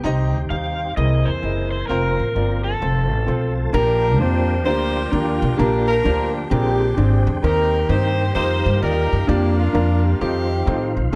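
Swung eighths in 4/4 drive this soulful, uplifting gospel excerpt, built on a woody, thumpy pizzicato upright bass up front, a natural-toned upright piano accompanying, and a smooth, clean tonewheel organ holding sustained chords in the background through a fast rotary speaker and chorus vibrato, while a bright, overdriven electric slide guitar carries the melody from 0.5 to 3.5 seconds and a mellow saxophone section with light vibrato enters at 3.7 seconds, set in a dark production with light reverb and small-room ambience.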